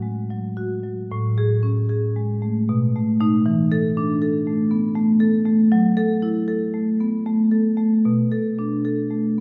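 Playful and warm, this brief contemporary classical excerpt for solo marimba moves in a rubato 3/4 around 77 BPM, its medium hard mallets drawing a dark, smooth, percussive tone that sits up front between A2 and A4 over a drift from Amaj7 through B7, E7sus4 and F#m7 to Bm7, all wrapped in the long, wet reverb of a church or concert hall.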